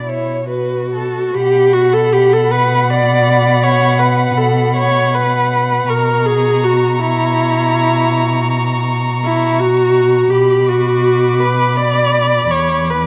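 The muted viola sits closest and most prominent in this slow, elegiac string quartet excerpt, its bowed accompaniment in a soft-attacked, veiled tone with vibrato. The muted cello shares that forward placement, carrying the bass with a smooth, dark top. Both muted violins play throughout: the second line sounds distant and shadowy, while the melody, held high around B5 to D6, sits in the background, sweetened with portamento and vibrato. In B minor and 12/8, the pulse moves at roughly 46-56 dotted-quarter beats per minute with a free, rubato feel, and the solemn harmony rests on B minor before shifting to A# diminished over B at 5.9 seconds and returning home. A brief opening of just over a second gives way to the main passage, which runs until the fragment ends at 13.1 seconds. Close, detailed microphones catch each con sordino voice inside a moderate recital-hall reverberation, while a vinyl crackle lends the sound an aged patina.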